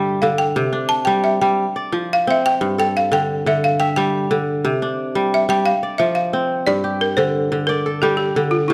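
Hypnotic and reflective, this short cut from a longer West African traditional piece moves at 118 BPM in a straight 12/8. A ringing, crisp, fingerpicked kora sits up front with arpeggios over G5, C5 and F5 harmony, while a woody, buzzing balafon played with hard rubber mallets enters at 0.2 seconds and carries a dry, close-miked solo melody until 6.7 seconds. The music then shifts to G minor for a closing section, all set in a moderate recital-hall reverb.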